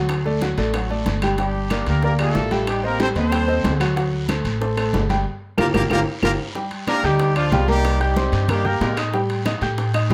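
The upright piano and upright bass open together, the piano clear and intimate with audible action noise, the bass a dark, thumpy pizzicato on gut strings, both up front in this driving, danceable salsa excerpt in G minor at 186 BPM. Congas, bongos, timbales, claves and guiro join at 0.1 seconds and sit in the background, with high-tuned, damped congas played by soft hands, round low-tuned bongos, ringing metal-shell timbales, and raspy guiro and woody claves set further back in a larger space. At 1.4 seconds a bright horn section takes the melody, tight and up front with vibrato and octave doubling, carried by plate reverb. The harmony moves from Gm7 through Am7b5 and D7 before a band accent and a drum fill lead into a new section at 6.6 seconds that touches Cm7 and a closing A7 with a flattened fifth and its third omitted. The horns finish at 9.0 seconds while the rest of the band plays on in a moderate small room.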